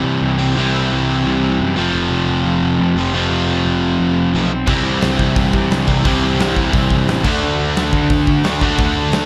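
Punk rock at a driving 175 BPM in a rowdy, rebellious mood, this dry clip from a longer piece opens on C and F with a bright, crunchy overdriven guitar riff, an up-front distorted electric guitar and a growly, punchy fuzz bass, until at 4.7 seconds a compressed, double-tracked fuzz guitar slips in behind them and a big acoustic rock kit, dark and smooth with a punchy kick, medium-tuned snare, crash and hi-hat, kicks in as the chords move to C and D.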